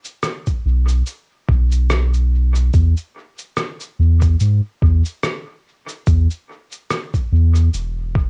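Spacious and peaceful, this ambient dub excerpt moves at 72 BPM in 4/4 with a gentle 16th-note swing, opening on a muffled, pitched-down electronic cabasa and rim click treated with dub echo and cassette grain. A thumpy, compressed electronic kick arrives at 0.5 seconds, up front and re-recorded in a small room, and at 0.7 seconds a deep, round sub bass joins, soft and sustained with a fast attack, ranging from E1 to G#2. The home cassette recording is dry, with little reverb, giving the low end an intimate, close presence.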